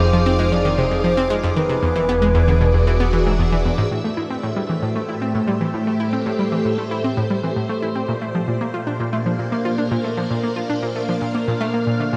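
A round, bright analog pluck sits up front, playing a riff with a fast attack, short decay, a ring-modulated edge, a filter sweep, chorus and delay. This is an expansive, hypnotic stretch of ambient, sequencer-driven space music, cut from a longer piece, at 115 BPM in a straight 4/4 and tuned to A4 = 438 Hz. A swirling, vintage string machine warbles through sustained chords with a moving notch from its phaser and ensemble chorus, while a very quiet, resonant stepped-filter texture bubbles high above. At the opening, a soft octave-layered lead with a dark, sine-and-triangle tone, vibrato, chorus and delay carries the melody until 3.4 seconds. A fat, nasal, saturated analog bass holds the low end until 3.9 seconds, when the harmony moves from Fm7 and E7 into Am7 and then Bbadd9 at 8.1 seconds. A huge, wet reverb with a long tail wraps the whole mix in deep space.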